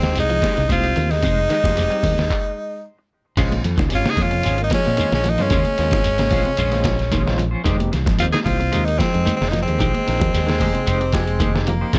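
A straight 4/4 afrobeat groove drives along at 112 BPM in Bb dorian, built on a compressed, pitched-down, muffled sampler-style kit with a thumpy kick, medium-tuned snare, hi-hat, handclaps and crash, anchored by a dark, round, punchy fingered bass. Congas with a bright, high-tuned, damped, hard-handed tone and a grainy, mellow shekere sit in the background, while a clean electric guitar adds stabs through tremolo and tape echo and a twangy, slightly broken-up guitar lays down arpeggios with subtle chorus. A barky, overdriven tine electric piano shimmers with fast tremolo through a combo amp, filling out the funky harmony as the chords move from Fm9 to Bbm9 and back. Up front, a raspy, gritty, forceful tenor saxophone carries the melody over a clear alto second line, with a stop breaking the groove at 2.3 s before the band moves into a new section at 3.4 s. Near the close of this cut from a longer piece, a warm, smooth-topped baritone saxophone joins the second line at 10.3 s, all set in a moderate club ambience with a top end that rolls off above 10.6 kHz.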